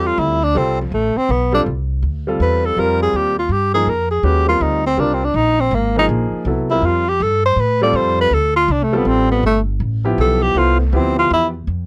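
A breathy tenor saxophone leads this short modal jazz excerpt, its mellow, whispered tone shaped by vibrato, soft attacks and scooped notes as it solos up front from the opening through 11.7 seconds. The mood is cool and spiritual, set in a lilting three-beat swing. A concert grand piano with a full, deep low end and natural sound plays accompaniment beneath the horn, moving through suspended ninth chords that shift from G9sus4 to F9sus4 and back. An upright bass, plucked with a woody tone on steel strings, sits close in the mix and rings on briefly after the other parts finish, stopping at 11.9 seconds. The dry, close studio sound, in the manner of a 1970s session, keeps the saxophone's intimate breathiness in sharp focus.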